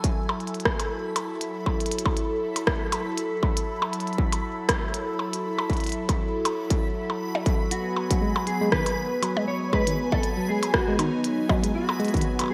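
Bright digital production with a 1980s flavour and a lush hall reverb frames this glitchy, cerebral IDM cut from a longer piece, swung on the sixteenths in 4/4. A distorted, overdriven electronic kick and a glitchy kit of clicky hi-hats, percussion blips and rim clicks with gated reverb sit up front beside a swirling, detuned analog pad thick with phaser and chorus, while a reversed, dreamy granular texture hangs high on one note throughout. At 7.7 seconds, as the chords move from F#m7 to G#m7, a dark, fingered electric guitar enters with a melody through analog chorus and delay, and from 8.1 seconds a clean tine electric piano adds delayed arpeggios.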